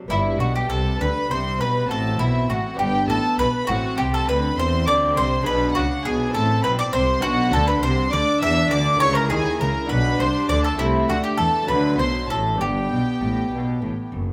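Close, detailed microphones and light reverb give this short passage, cut from a longer piece, an intimate chamber sound. It is a lively, brilliant baroque-style concerto movement in G major, moving in a straight 6/8 at 67 BPM counted in dotted quarters. A picked bowl-back mandolin, up front with its doubled strings, carries the melody from 0.1 seconds. Above it, a warm, period-style violin section with gut strings and light vibrato also plays a melody, while a second violin section with a smooth top sings a rich second line in the background. Underneath, a dark, distant viola section, a reedy cello section and an up-front double bass section fill the harmony and bass, and a bright, delicate fingerpicked lute with nylon and octave-doubled strings adds a soft accompaniment behind them. The harmony steps up through G, A minor and B minor, each chord briefly moving to a diminished chord and back, before A minor, D and a return to G close the passage at 12.6 seconds.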